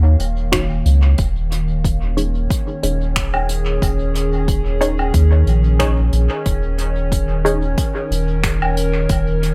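Ambient dub with a spacious, meditative mood, cut from a longer piece, where a warbling, lo-fi pad sustains chords through chorus, phaser and its own reverb over a deep, round sub bass sitting up front, moving from Ebm7 to Absus4/Eb. A soft brush kit with finger snaps, hi-hat and woodblock enters at 0.2 seconds under dub echo, joined at 0.5 seconds by an overdriven electronic kick and a muted, detuned chord stab carrying a filter sweep, phaser and dub echo. The whole mix is echo-heavy and set in a studio ambience.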